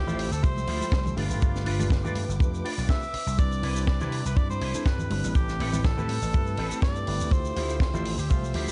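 Nu-disco at 122 BPM in 4/4 with a light sixteenth-note swing, this short excerpt feels sensual and cosmic as it moves through Dm11, G7 and Cmaj9 before returning to Dm11 at 7.3 seconds. A bright, punchy tenor saxophone carries the melody with vibrato and a tape echo, set close over a bell-like tine electric piano whose clean accompaniment is touched with slapback echo. An amped vintage slap bass gives a punchy low end, while an electric guitar with an envelope filter plays a twangy, scooped riff treated with ensemble chorus and slapback echo. The tight funk drum kit brings hi-hat, shaker and a high-tuned snare from a small room, joined by hard-handed congas kept very quiet and an up-front kick drum that sits from 0.4 to 8.4 seconds. A lush, bowed studio violin section, recorded close, holds sustained chords very quietly, and the whole production has a dark, warm sound bathed in studio reverb.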